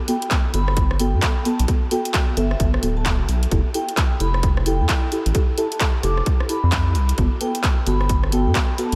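Drenched in a huge ambient reverb, this dreamy, sunny excerpt of two-step UK garage glows with a soulful haze at 131 BPM in G major, its sixteenths swung at 62%. Deep, soft chord stabs with chorus and tape echo carry a filter sweep throughout, moving from Gmaj7 to Fmaj9 at 3.5 seconds and back to Gmaj7. Above them, a bright vibraphone struck with medium hard mallets sings the melody, its metallic ring shimmering with a slow motor vibrato and its own tape echo. A house kit of handclaps, hi-hat and rim click plays from the start with a gritty overdrive and large-room character, joined at 0.3 seconds by a punchy, overdriven electronic kick that sits up front and shares that character. A rubbery, hollow square-wave bass arrives at 0.5 seconds, bouncy and dark with a resonant filter pluck, anchoring the groove low in the mix's foreground.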